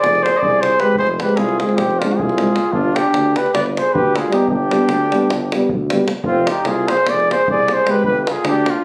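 Captured on a phone in the room with a moderate studio reverb, this short cut from a longer Balkan brass band piece moves in a straight 9/8 at 306 BPM in eighths, in G phrygian dominant, shifting between Fm and G with a virtuosic, bittersweet mood, as a mellow trumpet with light vibrato carries the melody up front over a dark, soft-edged second trumpet, a close-miked warm tuba holds the bass beneath a tight, dry davul, and from 0.8 s to 8.0 s a close trombone and a distant, roomy euphonium add classical-style accompaniment.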